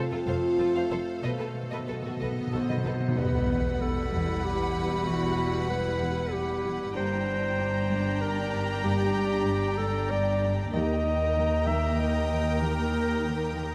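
Tense and eerie, this 95 BPM cinematic suspense cue in 3/4, cut from a longer piece, layers sul tasto violins in close, intimate melody and second line over a dark horn section, bowed cellos and double basses, a floating viola accompaniment and a morphing wavetable pad with ensemble chorus, while a bright trombone section drops out at 2.8 seconds, timpani with medium mallets play a fill from 1.2 seconds, an electronic impact lands at 3.2 seconds as the harmony settles into E harmonic minor, and a mellow, up-front clarinet carries a second line through a moderate scoring-stage reverb.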